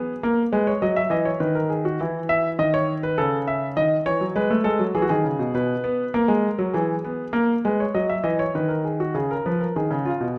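Classical baroque-style two-part invention for solo concert grand piano in E major, a stately and elegant passage at 101 BPM in a straight 3/4, cut from a longer piece. The intimate, up-front piano spans B2 to E5, with deep bass, long sustain and audible action noise, set in a moderate recital hall reverb, while the harmony moves through chords such as F#7, B/D#, A/C# and B7/D# before arriving at E. A new section begins at 9.2 s on a C#7 chord, just before the piano stops at 10.3 s.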